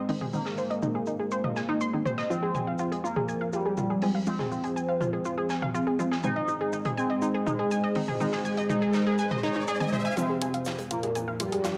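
Soaked in a wet recital-hall reverb, this dark, driving melodic techno cut at 122 BPM in F minor carries a juicy, ring-modulated resonant polysynth melody and puts bright, detuned analog pluck arpeggios up front over a deep, moody pad and punchy brassy synth stabs, with filter sweeps running through the pluck and pad, a tape-warm analog drum machine of hi-hat and toms joined by a smooth, big-room acoustic kit of hi-hat, shaker and snare, and a background riser entering at 8.2 s ahead of a build-up and drum fill at 10.2 s, where a filter sweep also reaches the stabs.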